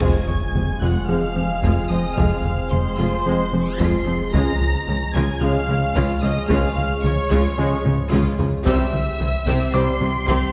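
A straight 4/4 pulse at 111 BPM drives this relentless, brooding cinematic cue, a hybrid of orchestra and electronics in F minor, with a taiko ensemble played with hard sticks in the background and a drum fill at 7.8 seconds. Underneath, a rubbery, bouncy square-wave bass riff sits alongside a deep, round sine sub bass and very quiet bowed cellos and double basses, while a tight, nasal sequenced synth plays very quiet arpeggios with a filter pluck. The harmony moves from F minor to D-flat and then C, held by an evolving, chorused analog drone, mellow close-miked French horns and bright trombones, with the horns and trombones kept in the background. Above, a lush high violin section carries the smooth melody with vibrato, a distant second violin line sits beneath it, violas accompany further back, and a very quiet, clear grand piano adds texture up high. An electronic impact is heard from the start until 2.2 seconds, and the excerpt, cut from a longer piece, sits in a moderate scoring-stage reverb with a rolled-off top end.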